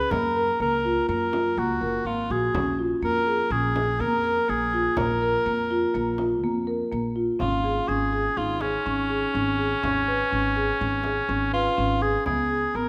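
Set in the moderate reverb of a scoring stage, this restless, playful chamber piece in 5/4 moves at 124 BPM in D-flat mixolydian, cut from a longer work. A close-miked, punchy cor anglais carries the melody up front while a woody, vintage-sounding marimba on rosewood bars plays arpeggios throughout. Underneath, a growly pizzicato upright bass holds the low end, and a deep frame drum played with hard hands sits in the background.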